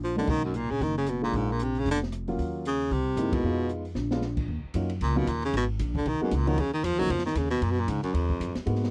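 A dry, close recording with a 1970s studio feel frames this brief, swinging and moody small-group jazz cut, where a bright baritone saxophone sits up front carrying the melody with light vibrato, subtone and scooped notes. A woody, thumpy upright bass on gut strings plays pizzicato underneath while an intimate grand piano, its action noise audible, accompanies through minor-key changes, and an open drum kit with dark cymbals, a high-tuned snare and a boomy kick sits lower in the mix. Drum fills mark 0.0 and 4.0 seconds, and the band hits an accent together at 3.3 seconds.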